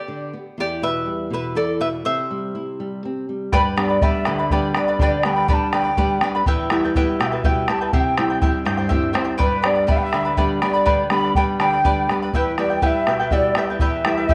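Andean folk in a festive yet wistful 6/8 at 82 BPM, where a shimmering, bright fingerpicked charango and an up-front flamenco guitar open over G, Em and C before a deep, dark bombo enters at 3.5 seconds and an airy, distant quena carrying the melody with expressive vibrato arrives just after, joined at 9.4 seconds by a very quiet, close-miked polished pan flute as a tongued second line, all set in a wet echo-chamber reverb with small-room ambience.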